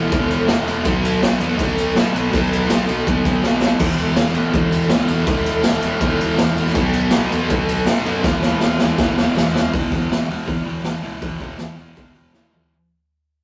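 A straight, driving 4/4 beat from a raw garage drum kit, saturated and gritty with a boomy kick and a rolled-off top, pushes this rowdy garage-rock fragment, with fills breaking up the groove. Up front, a bright, double-tracked fuzz guitar picks a riff on E5 and B5 power chords, while a dark, round, overdriven fingered bass sits very quietly beneath. A distant, jingly tambourine is barely audible from 3.9 to 9.7 seconds, and the whole rough rehearsal-room take, lightly touched by reverb, fades out over its final 3 seconds.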